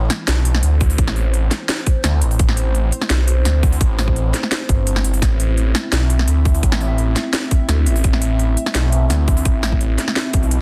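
Half-time drum and bass at 170 BPM in A minor, this short cut from a longer piece feels spacious and tense, resting on a single A minor chord throughout. A thick, swirling detuned saw bass sits up front from the very start, its phaser and tube saturation giving it a gritty, saturated weight in the low register. Behind it, a deep, moody analog pad holds sustained chords with a slow attack and long release, colored by chorus and phaser and pumping against the sidechain. The drum kit brings a cracking snare with soft clipping and crisp hats, while a tight, tape-warm electronic kick enters at 0.8 seconds and stays prominent in the mix. Light reverb and digital ambience open up the space around a dense, heavily limited modern master.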